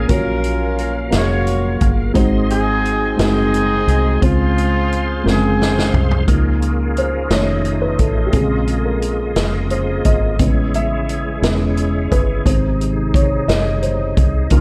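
The 6/8 pulse comes from a roomy, up-front big-band drum kit with a boomy kick and a drum fill at 5.3 seconds, over a round, punchy fingered electric bass and a woody, slightly detuned upright piano in this slow, jubilant yet reverent gospel excerpt. A smooth jazz horn section with light vibrato carries the melody until 6.2 seconds, while a reedy, clean tonewheel organ holds sustained chords through a fast rotary speaker with chorus vibrato and audible key click. From 6.3 seconds the mellow, intimate piano takes a solo with audible action noise, all set in a small room with a dark production.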